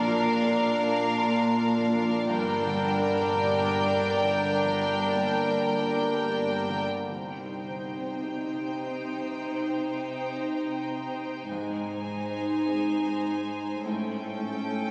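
Moving and sorrowful, this cinematic passage in C minor drifts in a rubato 6/8 at roughly 48-55 BPM, cut from a longer piece. A violin section carries the melody high in its range, bowed sul tasto with light vibrato for an intimate, close sound, while a second, darker violin section sings a soft-edged line beneath it. A viola section floats in the distance with a pure tone, and a grand piano sits in the background, its action noise audible, its deep bass and long sustain giving the accompaniment a polished warmth. A cello section and a double bass section anchor the low end with shadowy tone, the cellos smooth-topped, the basses dropping out at 6.8 s just before the second section begins at 7.1 s. The harmony moves from Bb and G minor into C minor and Ab before closing on A7, all bathed in a long, cathedral-like reverb and captured on a phone in the room.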